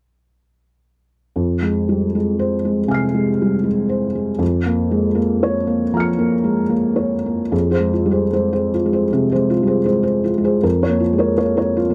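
A felt-muted upright piano enters alone at 1.4 s in this reflective, intimate fragment of neoclassical minimalist music, cut from a longer piece. Its soft, mellow tone sits up front, with the action noise of the instrument clearly audible as it moves freely in rubato between two alternating minor harmonies. The dry, close sound recalls a 1970s studio, touched with light reverb, and the playing stops at 11.9 s.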